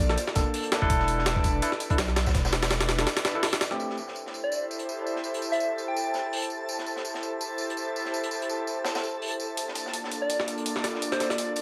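A swung jungle breakbeat drives this dark, atmospheric drum and bass fragment. A compressed, pitched-up sampler-style kit with a thumpy kick and high-tuned snare sits up front over a second, smoother breakbeat kit whose saturated hats, snare and tambourine carry a rolled-off top. In the opening drop, a deep, thick saturated sub bass and barky, overdriven tine electric piano stabs fill out the low and middle registers, the piano treated with a low-pass filter and dub echo. An airy, breathy pad with chorus holds sustained chords throughout, while a round, gentle FM lead with its own chorus and dub echo appears in brief, keys-like phrases. The sampler kit falls away at 3.8 seconds, a twinkling granular texture with octave-up shimmer and built-in reverb enters at 4.8 seconds, and the up-front kit returns at 9.6 seconds, all within a small, moderately reverberant room.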